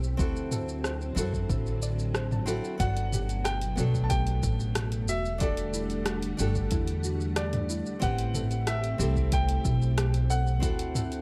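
Dry and close, this relaxed sunset chillout fragment at 92 BPM in G major sets an up-front, woody pizzicato upright bass and a tape-warm deep electronic kick under a deep house kit of hi-hat, rim click, shaker and toms, while a fingerpicked nylon-string guitar with delay and a silky, slow-blooming string machine with ensemble chorus hold the D7, Gmaj9, Em11 and Am7 changes, a dark, round pluck with 12-bit sampler grit ripples arpeggios in the background, and a clear baby grand piano enters at 2.8 s with a delayed high melody.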